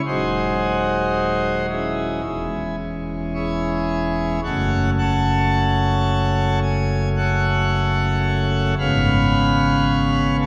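Moving in a slow, rubato 4/4 at 55 BPM, this dark, solemn classical chorale in C# minor, tuned to A4 = 442 Hz, is a short cut from a longer piece. A lone pipe organ on its principal chorus plays from 0.1 to 10.5 seconds, reaching from D#1 up to A5 with a full, romantic voicing set up front, and moving through G#7/D#, C#m/E, F#m and C#7/G#. A wet church reverb with a 2.6-second decay surrounds the organ.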